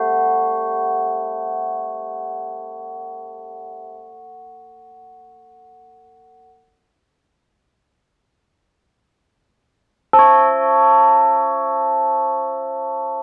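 Free of any pulse, this calm world meditation piece drifts along in free time, resting in A major pentatonic. A solo set of tubular bells carries the music from 0.0 to 13.2 seconds, moving within a narrow span from E4 to C#5. Struck with a padded hammer, the bells sound mellow and solemn, their metallic ring sitting up front in a modest small room. The sound has a worn, vintage cassette character, band-limited and touched by a warbling pitch drift that makes each tone waver gently. The result is a peaceful, unhurried passage, a short section cut from a longer piece.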